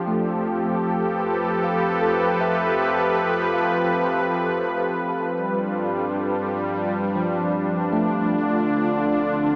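Warm and peaceful, this ambient fragment from a longer piece floats on a smooth, detuned sawtooth pad with chorus and tremolo sitting up front, while a clean tine electric piano plays tremolo-washed arpeggios through tape echo in the background, a round, deep analog bass and a warbling, evolving vintage drone hum beneath, and the whole sound, drenched in huge reverb yet heard as if through a small speaker, drifts from Fmaj9#11 to G7 at 5.3 seconds and Dm7 at 8.3 seconds.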